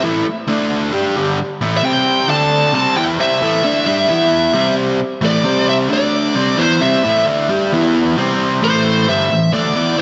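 Rock in A minor at 133 BPM, heavy and driving, this short cut from a longer piece opens with a double-tracked, overdriven electric guitar riff, picked and up front with a slapback echo, moving through power chords and A minor. At 1.8 seconds a dark, bluesy lead guitar joins with a distorted, picked melody coloured by tape echo, and the section shifts at 8.6 seconds. A lush hall reverb gives the whole an arena-sized sound, its top end rolled off for a muffled sheen.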